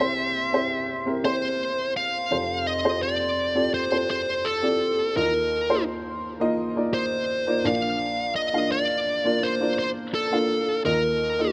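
Anthemic, warm pop in a straight four, where a bright, overdriven electric lead guitar carries the melody up front over a dark, woody, slightly detuned upright piano whose boxy, short-sustained chords move from C through Fadd9, Ebsus2 and Bb, both parts playing throughout this 11.5-second excerpt in a small room with light reverb.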